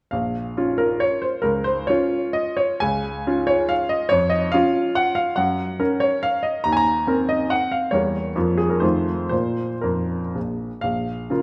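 A clear baby grand piano plays alone, up front and natural in tone with a short sustain, carrying this capricious, nostalgic romantic dance in triple time with dotted rhythms and a flexible, rubato pulse. Cut from a longer piece, the passage runs from 0.1 to 11.4 seconds, moving through minor and major harmonies, including a diminished chord and a dominant seventh, before settling back on the home minor chord at 10.8 seconds. A wet recital hall reverb surrounds the piano with a lingering sense of space.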